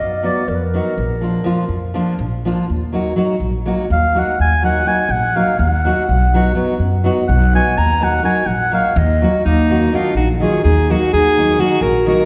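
Virtuosic and bittersweet, this excerpt of Balkan wedding band folk runs in 7/8 at 248 BPM counted in eighths, in Eb harmonic minor, and keeps speeding up from start to finish. A dark, smooth-topped clarinet plays a classical-style solo up front through the first 9.5 seconds. It is backed by a fingerpicked nylon-string guitar that sounds full-bodied, with fresh strings and a touch of finger squeak. Beneath them the upright bass plays pizzicato on gut strings, woody and thumpy. At 9.5 seconds a warm alto saxophone takes over the melody with vibrato, and the clarinet moves to a second line. The harmony moves between B, Bb and Eb minor, and the band is heard from further back in a wet scoring-stage reverb.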